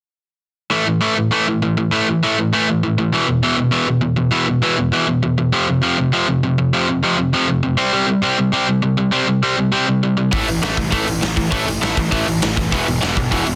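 A cranked stack guitar, overdriven and up front, picks an aggressive punk rock riff in A minor at 200 BPM, playing alone until 10.3 seconds, when a punchy big rock drum kit in a bright stone room, a compressed second overdriven guitar and a growly fuzz bass tucked in the background crash in for an angry finish to this short cut from a longer piece, moving through A5, E5, F5, C5 and Em under a dense, heavily limited master.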